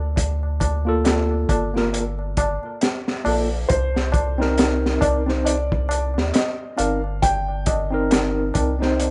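Studio reverb surrounds this rough home-demo mix, its top end dulled and capped at 11.0 kHz. The fragment is a melancholic, cinematic piece of trip hop at 68 BPM in 4/4 with a swung sixteenth feel, set in C dorian. A deep, round dub sub bass sits up front from the start, while a crunchy breakbeat kit of saturated, gritty character brings a punchy kick, a high-tuned snare and hi-hat from a small room, joined by a low-tuned tabla with a short ring. At 0.9 seconds a clean tine electric piano enters through a combo amp, carrying medium tremolo and tape echo as it voices the chords, moving from Gm9 to Cm7 at 3.7 seconds. At that same moment a felt-muted upright piano takes the melody, mellow and intimate, with its hammer action audible beneath the tape echo.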